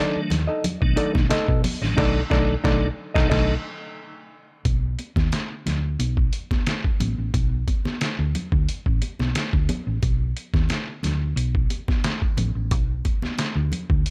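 A gritty, pitched-down sampler-style drum kit with a thumpy kick and hi-hat drives this playful, energetic funk at 89 BPM in B mixolydian alongside a round, dark hollow-body short-scale electric bass up front, while a clean hollow-body jazz guitar comps and a piping tonewheel organ with key click, chorus vibrato and slow rotary speaker plays stabs over B7#9 until 3.5 s, a band accent lands from 2.0 s, bright high-tuned congas sit in the background, and the dry mix moves to Bm7 at 4.7 s.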